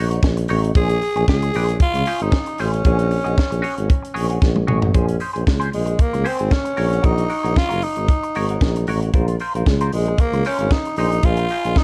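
Glamorous and danceable, this short disco excerpt moves at 114 BPM in a straight 4/4, cut from a longer piece. A tight funk drum kit sits up front with a high-tuned snare, a tight kick and a rolled-off top, while a tuba carries the bass line with a distant, roomy tone. A bright, clean semi-hollow electric guitar plays compressed accompaniment through a wah, and from 0.8 seconds a raspy, growling tenor saxophone takes the melody with light vibrato. The harmony moves through suspended and minor ninth chords such as Ab7sus4 and Bbm9, settling on Fm7 near the close. A drum fill at 4.4 seconds leads from the opening section into the second. The small room ambience and dark, warm production give the whole a warm character.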